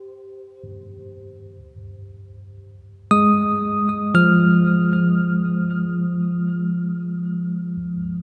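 A bell-like, up-front tine electric piano plays alone with delay through this serene, reflective ambient excerpt in free time and F minor, drifting from a rootless Fsus2 into Fm7 at 1.6 seconds inside a wet cathedral reverb with softened highs.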